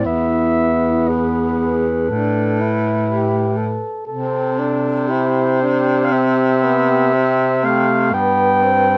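Classical and elegiac, this solemn, rubato excerpt for single-reed quartet sets a mellow clarinet melody with a soft attack above a lightly vibrato alto saxophone second line, a vintage-toned tenor saxophone accompaniment and a warm, roomy baritone saxophone bass, all four playing throughout in light reverb.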